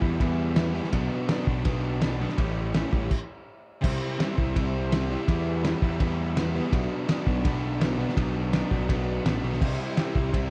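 An overdriven electric guitar riff, a fuzz-driven picked bass and a cloth-damped, thuddy drum kit start together at the outset of this restless, moody indie rock excerpt, pushing along at 166 BPM in a straight 4/4 with a B phrygian tonality. The double-tracked, compressed guitar sits up front with a dark, overdriven bite, moving through Em, Bm and A5 before the band cuts out in a brief stop at 3.1 seconds. When the riff returns at 3.8 seconds, the progression shifts to C, then cycles back through Em and Bm before landing on C again. Beneath it, the punchy bass adds a thick, fuzzy low end, while the muffled drums give a fat snare, tight kick and subdued crash and ride cymbals, roughened by a lo-fi, sampler-style crunch and a rolled-off top. A light small-room reverb and a dark, warm production keep the whole thing close and heavy.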